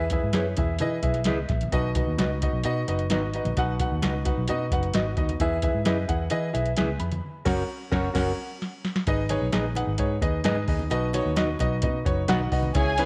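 Warm and uplifting, this short excerpt of uptempo 1960s-style soul moves at 131 BPM in B major, with a clear, up-front concert grand piano and a round, punchy foam-muted electric bass carrying the groove over a soft analog rhythm box with a deep kick, tonal snare and metallic hats, plus very quiet, low-tuned congas in a live room. A mellow, dark electric guitar adds clean fingered stabs, the band hits an accent from 7.2 seconds, capped by a drum fill near 8.6 seconds, before shifting to G#m, and the piano takes a fill just before a lush, woody string section with vibrato enters at 12.8 seconds. Moderate echo chamber reverb gives the whole a roomy glow.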